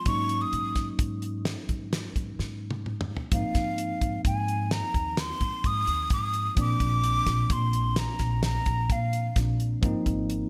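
Straight 7/4 drives this intricate, brooding progressive instrumental fragment, where a breathy, close-miked silver concert flute carries an unsteady, tongued straight-tone melody up front over a clean tine electric piano heard through its built-in speakers, a woody pizzicato upright bass, and a dry, damped 70s drum kit with a fat snare, tight kick and gated reverb that plays a fill from 2.4 to 3.3 seconds before the harmony moves from Ab7sus4 through Ab6 and Bbadd9, all set in a small room with light reverb and a bright 1980s-style digital sheen.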